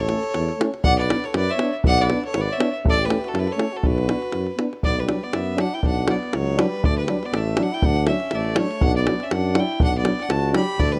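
A rough home demo mix bathed in studio reverb carries this fiery, restless Balkan brass band excerpt in B minor at 121 BPM, a swung 2/4 in which a clear, earthy bowed fiddle leads up front over a mellow flugelhorn second line with light vibrato, a warm, smooth-topped tuba bass also up front, two classical-style euphoniums in the background (one clear with a soft attack, the other mellow), and a tight, close, dry davul, as the harmony moves between A and B minor before turning to D at 6.8 seconds.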